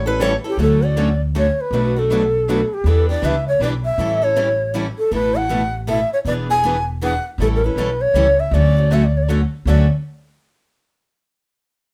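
A swung 3/4 lilt at 159 BPM drives this playful, lively excerpt of acoustic string swing in D major, anchored by a woody, thumpy pizzicato upright bass on gut strings that sits up front from the first beat. Two picked acoustic guitars, a steel-string concert guitar and a boxy swing-style guitar, fill out the accompaniment through changes such as Dmaj7, Bm7, Em7 and A7. From 0.5 seconds a breathy, reedy bamboo shakuhachi carries the melody, close-miked and up front with vibrato and tongued chiff, and the whole ensemble sits in a moderate studio reverb.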